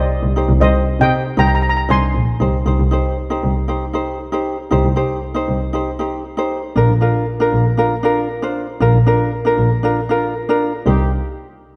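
A straight 4/4 calypso groove at 117 BPM in C minor sets a bittersweet, brooding mood in this excerpt from a longer piece. A shimmering double-seconds steel pan, struck with medium rubber sticks, carries the melody up front until 2.4 seconds. A light, thumb-plucked acoustic ukulele and an earthy bowed double bass with gentle vibrato play throughout as the harmony moves from C minor to B-flat at 6.8 seconds. A mellow, punchy horn section slips in faintly at 10.9 seconds as the chord returns to C minor, all within a moderate concert-hall reverb.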